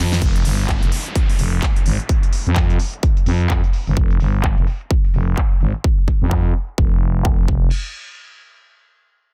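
This cut from a longer bass house track has a dense, heavily limited modern master set in digital ambience, with a bouncy, aggressive mood and a swung sixteenth-note feel in 4/4. A drum fill opens it at 0.0 s, and a punchy, tape-warm electronic kick sits up front alongside a layered big-room dance kit of huge snare, crisp hats, handclaps, shaker and crash cymbal, whose hats, snare, percussion and cymbals pass through low-pass filters. A growling, thick FM bass with a sine core and fast attack holds sustained notes up front, pumping against the sidechain. Filter sweeps move across the drums and the FM bass through the main section. An electronic downlifter drifts beneath the groove until 4.0 s, and a new section begins at 7.7 s.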